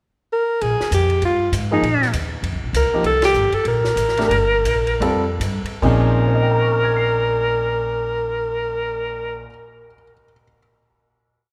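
Modal jazz in Bb dorian with a cool, hypnotic mood, swinging in 4/4 at 138-198 BPM and slowing down from 3.0 s into a final Bbm11 chord at 5.8 s. A mellow, up-front alto saxophone with vibrato plays a forceful, motif-based solo of call phrases over a woody, thumpy walking upright bass on gut strings and a compact cocktail drum kit with a stick-played ride pattern, dark cymbals, a high-tuned snare and a punchy kick, with a band accent at 3.2 s. A baby grand piano with short sustain adds syncopated comping in quartal voicings, and the group sits in the moderate reverb of a concert hall.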